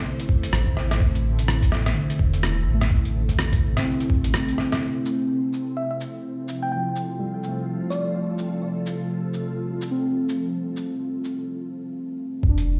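A ghostly, rainy future garage cut opens on muted, felt-like synth keys with chorus, 12-bit sampler grit and delay, beneath an ethereal, airy pad treated with ensemble chorus, phaser and built-in reverb, both pumping against the sidechain, while a muffled, pitched-down sampler kit of cabasa, hi-hat and rim click ticks along with overdrive in a swung 4/4. A thumpy overdriven kick and a deep, rumbling detuned saw bass drive the opening bars, then drop away around 4.3 seconds. From 4.8 seconds a filter sweep moves over the keys, and a round, tine-like thumb-piano pluck with cassette tape colour and delay soon floats briefly in the high register. After a short break the kick and bass return at 12.4 seconds, and the whole mix sits in a lush hall reverb that sounds like a big system playing into a bare room.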